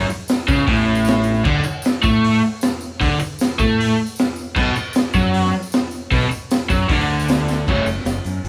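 A straight, driving four-four beat comes from a crunchy breakbeat drum kit that enters at 0.3 s, its punchy kick, high-tuned snare and dark cymbals saturated and gritty with a rolled-off top, placed up front, and a drum fill arrives at 7.5 s. This short, raw and menacing garage rock excerpt, cut from a longer piece, sounds like a small band playing live together in one large studio with moderate reverb. A picked, double-tracked electric guitar carries the overdriven riff up front, moving from a rootless minor chord through D and B power chords. Beneath it, a growling fingered electric bass adds a bright, direct-and-amped overdriven edge. A jingly tambourine sits close and dry in the background, filling out the brief, rough-edged passage.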